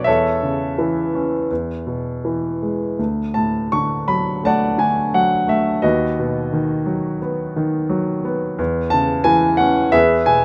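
Hopeful and warm, this brief classical passage for solo grand piano unfolds with a lyrical, rubato feel, its beats stretching and yielding freely. The piano sounds smooth and vintage, placed up front with short sustain and a touch of light reverb, ranging from deep bass notes to bright upper tones. Its harmony drifts from A over E through D and B over D sharp before settling on a colorful E chord near 8.6 seconds, then resting on E just before the cut.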